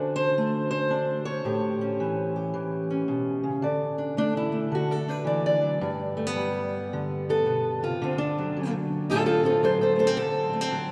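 Laid-back and rollicking, this short acoustic country blues, cut from a longer piece, features a lone fingerpicked steel-string parlour guitar, dark, woody and boxy with old strings and placed up front, swinging in 4/4 over D7 and A7 before taking a solo from 3.6 seconds across D, G and D7, set inside a long cathedral reverb that suggests a church or concert hall.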